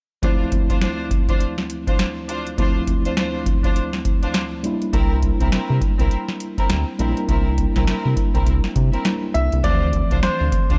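A dry, close sound with little reverb frames this short, confident new jack swing cut in D minor, moving at 102 BPM in 4/4 with a 60% swing on the sixteenths. An overdriven, booming analog drum machine sits up front, pairing a deep kick and crisp snare with metallic hi-hats, while a mellow tine electric piano lays down clean accompaniment over Dm7 and then C7 at 4.6 seconds. A clear, lush studio string section adds bowed stabs with vibrato and a smooth top, treated with delay. A round, dark analog bass with a fast attack and sustained, evolving tone enters at 4.9 seconds. Near the close, a brilliant grand piano with short sustain and delay carries a brief, polished melody from 9.3 seconds, just before the harmony returns to Dm7, giving the slick groove a bright finishing touch.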